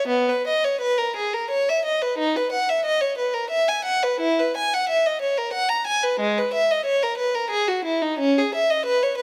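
Radiant and serene, this brief excerpt from a longer baroque-style suite movement for unaccompanied violin unfolds in B major at 89 BPM in 3/4, its beats uneven and its pulse shaped by rubato. A single bowed violin carries the whole passage from 0.0 to 9.2 seconds, ranging from G#3 up to A#5. Its tone is warm and smooth, with vibrato, an even delivery and a silky upper register. The close, detailed microphones place the player up front, while a moderate recital hall reverb of 1.6 seconds gives the line a gentle halo of space.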